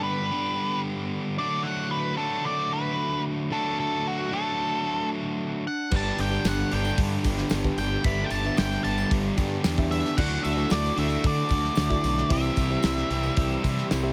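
A dark, fuzzed octave lead guitar carries the melody over a bright, up-front cranked stack guitar riff from the start, and at 5.9 seconds this sunny, swaggering classic rock excerpt at 112 BPM in D mixolydian fills out with a reedy, worn, slightly out-of-tune electric piano, a crunchy background guitar, a very quiet double-tracked fuzz guitar, a bright, fuzzed, overdriven fingered bass, and a dry, damped 70s drum kit with a tight kick and rolled-off top, joined moments later by a faint jingly tambourine, all in a close, nearly reverb-free sound moving through G, D, Dadd9 and C.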